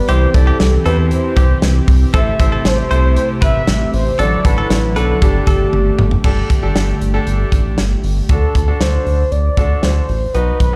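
A mellow, horn-like synth lead with chorus and tape echo carries the melody through this wistful, nostalgic synth-pop excerpt in G major at 117 BPM, floating over a brassy, detuned analog pad that holds sustained chords until 8.3 seconds. A round, deep analog bass and an up-front modern drum kit with punchy kick and bright cymbals drive the straight 4/4 pulse, while a brilliant concert grand piano plays accompaniment and a twangy, clean direct-recorded electric guitar adds a short second line until 5.7 seconds, just before a drum fill. The whole mix sounds as if played on a big sound system in a bare room with stone reverb, moving through C, Am7 and Gsus2 before landing on D7 in the closing section.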